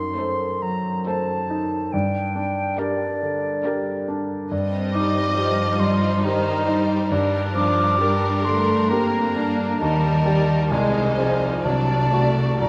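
The grand piano stands out most, clear and up front with a long sustain as it carries the melody across a span from Bb1 to D5 in this brooding, passionate excerpt from a romantic movement for piano and orchestra. Set in G minor and 3/4 at a rubato 60-71 BPM, the harmony opens on F#dim7 before settling on G minor, passing through Cm/G and on to Ebmaj7, Ab/C and D7/C. A concert flute with a pure, straight, tongued tone traces a second line high above, while a distant violin section also carries the melody with expressive vibrato and a second violin group, close but kept in the background, slides through its own line with portamento. Beneath them a smooth, even viola section supplies lush accompaniment, and the cello section enters at 1.9 seconds with a bowed, warm and expressive bass. A wet concert hall reverb with a 2.4-second decay gives the ensemble a spacious, enveloping glow.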